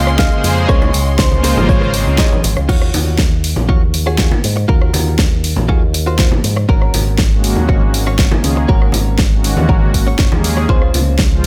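Groovy and sensual, this nu-disco excerpt moves at 120 BPM in a straight 4/4, set in Eb dorian and tuned slightly flat of standard. It opens on a drop, where a bright, clean guitar melody with tape echo, a detuned sawtooth pad and a rich, bowed violin section carrying sustained chords in the background with sampler grit and sidechain pumping all sound together before falling away by 2.7 seconds. Driving the groove throughout are a punchy electronic kick, a layered pop kit with fat snare and bright hats, and an envelope-filtered fingered bass thickened by tube saturation, while cabasa and congas ring distantly behind them in a large room. A twangy, picked guitar riff with analog chorus and slapback echo runs nearly the whole length, and the chorused, tremolo-shimmered pad returns at 6.7 seconds with its cassette and slapback colouring. The harmony moves from Bbm9 through Ebm9 and Ab9sus4 to Dbmaj7, all wrapped in a digital ambience.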